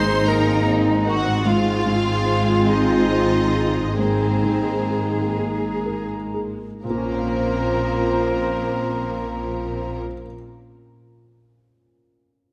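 The sound is a wet scoring-stage reverb around a bittersweet, sorrowful cinematic fragment in Bb minor, slow and rubato in 6/8 at about 40-51 BPM and slowing from 0.3 to 6.8 seconds, where a clear, smooth violin section carries the melody over second lines from bright clarinet, airy silver flute, a very quiet dark cor anglais and a lush, distant second violin section, with a felt-muted upright piano lingering until 12.5 seconds, close viola section accompaniment, mellow French horn chords, ringing fingerpicked harp, and focused cello and double bass sections underneath as the harmony moves from Abadd9 to Bbmadd9 at 6.8 seconds.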